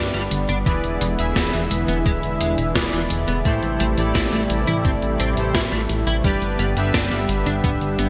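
Synthwave at 86 BPM in G major, uplifting and dreamy, where a lush, warbling unison pad with shimmer reverb and sidechain pumping sustains chords over a dark, glossy chorused synth bass, while bold, fat analog synth brass stabs through chorus, cassette tape and digital delay, a clean, picked electric guitar riff sits in the background with analog chorus and delay, and a tape-warm drum machine with gated reverb snare and hi-hat is joined by a thumpy electronic kick from 0.7 s, all moving from G through E7 and Am7 back to G in a bright 1980s-style digital production with a lush hall reverb.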